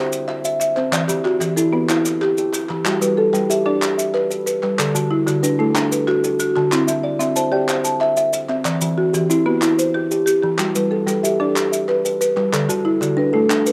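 An up-front kalimba, plucked with a thumbnail, rings out dark and hollow in smooth arpeggios at the heart of this hypnotic southern African traditional piece, built on an interlocking mbira-style cycle in 12/8. Beside it, a buzzing marimba struck with medium hard mallets adds dry, woody arpeggios on hardwood bars, and both of these parts carry the colour of cassette tape. Maracas enter at 0.1 seconds with a mellow, compressed, saturated texture, and a group handclap follows at 0.3 seconds, sounding human and acoustic in a live room. Over a straight feel, the harmony circles through C, Em, G and D, wrapped in moderate spring reverb and small room ambience on this warm home cassette recording. The excerpt, cut from a longer piece, ends at 13.7 seconds.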